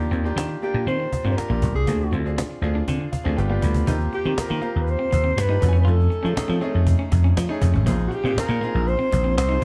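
Polished 1980s jazz-funk pop at 120 BPM in a straight 4/4, slick and bittersweet in mood, this cut from a longer piece moves through lush extended chords from Ebmaj9 through an altered F7 to a suspended Bb9. A growly, punchy vintage slap bass sits up front and anchors the groove alongside a snappy cajon with snares, recorded close and dry. A bright baby grand piano with brilliant, long-sustaining tone fills out the accompaniment, while an electric guitar on the edge of break-up plays a picked riff in the background. From 0.6 seconds a dark alto saxophone carries the melody up front in a jazz-style solo, with vibrato, scooped notes and a smooth top. Around 2.9 seconds the piano adds a fill, joined by a drum fill at 3.4 seconds that leads into the next section at 3.9 seconds. The band plays live in one room, framed by a moderate studio reverb.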